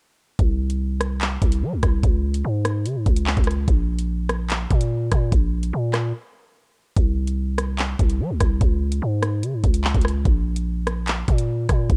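At 0.4 seconds a drill drum kit and a growling 808-style bass arrive together, setting a tense, ominous hip hop groove at 146 BPM in 4/4 with a half-time feel. The electronic kit sits up front, built from a knocking kick, metallic hi-hats, handclaps and rim clicks, all roughened by a vintage 12-bit sampler grit. Beneath it the bass is a buzzy, sine-based tone with a fast attack and a decaying tail, also placed up front and ranging from Bb1 to G3. A break between 6.1 and 7.0 seconds interrupts the single section before both parts carry on to 12.0 seconds. The dark production keeps the room dry, with little reverb, and the clip is cut from a longer piece.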